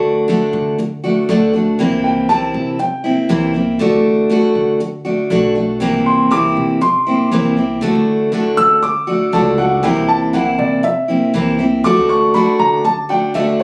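A full-bodied picked steel-string acoustic guitar with old strings and a thumpy, woody pizzicato upright bass on gut strings open this sunny, relaxed Latin excerpt at 119 BPM in a straight 4/4, rocking between D and C7. At 2.0 seconds a dark, mellow grand piano enters up front with boxy arpeggios high in its range and carries the lead. The sound is that of a phone capturing the room, with club reverb and compression.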